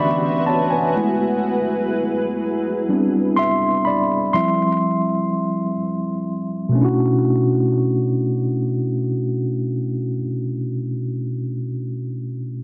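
A clean tine electric piano opens this moody, late-night R&B excerpt at the front of the mix alongside a cloudy granular pad that holds detuned, blurred chords through its own reverb before falling away at 2.9 seconds. The tempo is a slow 62 BPM in a straight 4/4, in B minor with tuning set at A4 = 441 Hz. The electric piano carries the accompaniment across a broad range from B2 to C#6, its tone heard through built-in speakers and softened by a low-pass filter, and it steps forward as a solo voice for the opening stretch while a filter sweep runs until 6.8 seconds. The harmony moves through Bm11, F#m11, Gadd11 and Cadd11/F before returning to Bm11 as a new section begins at 6.8 seconds. A lush hall reverb with a 2.7-second tail surrounds the piano, which plays on until 12.6 seconds, where this fragment of a longer piece is cut.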